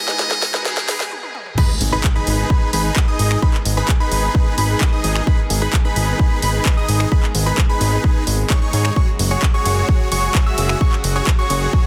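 A huge, detuned supersaw riff runs through this emotional, powerful excerpt of festival progressive house at 130 BPM in G# minor, pumping against the sidechain and trailing digital delay. It opens on a short build-up: a brilliant, buzzy trumpet with a metal mute sings a brief melody over a clear, intimate grand piano, both dropping out at 1.1 seconds as a drum fill, a filter sweep and a very quiet riser lead into a stop. The drop lands at 1.6 seconds with an impact, a punchy, up-front electronic kick and a catchy, plucky unison lead spinning high arpeggios through a moving notch. Beneath, a fat analog bass drives the low end while a distant, sul tasto string section floats softly in the background. An overdriven house kit with a cracking snare and bright hats fills the groove, and the harmony shifts from G#m to F#sus2 at 9.0 seconds. The mix is dry, dense and heavily limited in a modern master.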